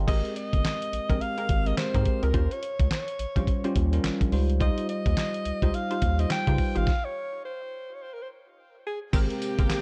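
R&B in a new jack swing style, this upbeat, bouncy cut from a longer piece moves at 106 BPM in Ab major with a swung sixteenth feel, driven by a gritty, compressed sampler-style drum kit with thumpy kick, fat snare, hi-hat, handclaps, tambourine and crash cymbal up front, and a deep, round analog bass. A bell-like tine electric piano carries the accompaniment while a funky, detuned polysynth adds punchy stabs with chorus and delay, and a mellow alto saxophone with vibrato and scooped notes sings the delayed jazz-style lead over Abmaj9, Eb13 and Dbmaj9#11. After a break from 6.9 s to 9.1 s, a lush, distant bowed string section enters at 9.1 s on the return of Abmaj9, all within a dark, dry production.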